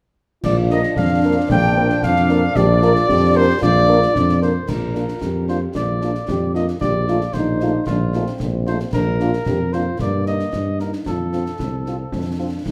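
Festive and spirited, this short cut from a longer military-style march for wind band moves at 113 BPM in a straight 2/4, set in Bb major. A mellow solo cornet carries the melody up front with light vibrato and a roomy, distant quality, while a warm euphonium shapes a second line in the background. A hollow, airy small flute group and a bright, tight trombone section playing sustained chords join for the opening stretch only, both dropping out at 4.4 s. Underneath, a soft-attacked tuba anchors the bass prominently, the French horn section fills in a tight accompaniment from 0.7 s, and concert snare, clash cymbals and bass drum keep the march going with bright cymbals and a live-room feel. A moderate recital hall reverb gives the band an open classical sheen, and the harmony moves from Bb through F7/Bb and Eb/G to land on F at 11.1 s.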